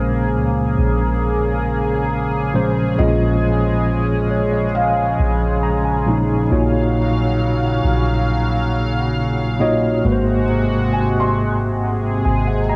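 A mellow, clean tine electric piano provides the accompaniment in this moody, longing R&B excerpt in Bb minor at 68 BPM, sounding up front as if through its built-in speakers, with cassette tape colour and fills at 3.9 s and 11.8 s over chords moving from Bbm7 to Ebm9/Bb and Ab7. A shimmering, retro pulse-width pad with chorus holds bright, detuned sustained chords beside it, while a soft 808-style bass adds deep, round, dark low notes with a fast attack. In the background, a felt-muted upright piano adds an intimate, hushed texture with audible action noise and tape echo, all set in a moderate room ambience with a home cassette character.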